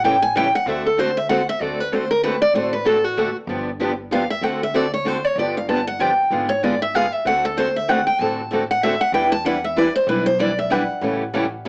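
A picked steel-string acoustic guitar carries the melody in a bright, up-front solo with audible finger squeak, backed by a second picked guitar and a third tucked into the background, while a woody, thumpy upright bass with gut strings and tube saturation anchors the low end. This charming, swinging jazz manouche cut moves briskly at 191 BPM in 3/4 in D mixolydian, cycling through dominant chords and a G#dim7 passing chord before landing on Em7 and A7. A moderate club reverb surrounds the playing, and the whole recording carries the worn, warbling pitch drift of old cassette tape heard through a small speaker.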